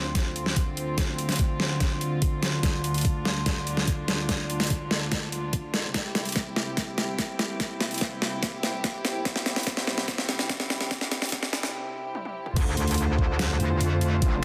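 A dense, heavily limited mix with moderate plate reverb opens this chaotic, heavy half-time wobble dubstep excerpt, where a floating, distant chamber string section holds soft-attack bowed chords from Dm7 to C that pump against the sidechain, while an overdriven knocking kick and a layered electronic kit of deep snare, bright hi-hats, finger snaps, toms and crash build through drum fills and a filter sweep to a break at 11.7 seconds, before the drop at 12.6 seconds unleashes an aggressive, metallic FM wobble bass, distorted and chorused, up front over the returning Dm7.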